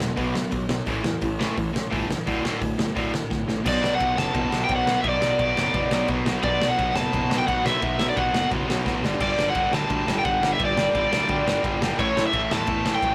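Punk rock, energetic and rebellious, with a bright overdriven guitar riff up front alongside a very quiet warm fuzz guitar, a growly fuzzed bass in the background and a loose acoustic kit with a fat snare, punchy kick and dark cymbals, before a cranked lead guitar enters at 3.7 seconds after a drum fill, all captured in a rough rehearsal-room sound with tube saturation.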